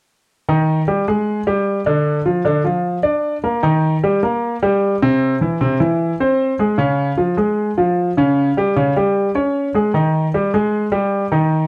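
A clear, intimate grand piano sits up front with audible action noise and long sustain, playing a lively, sunny jazz solo at 152 BPM in Ab major (tuned to A4 = 445 Hz) from 0.5 to 11.6 seconds, moving through chords such as Cm7, Abaug and Db within a dark production and moderate studio reverb in this short cut from a longer piece.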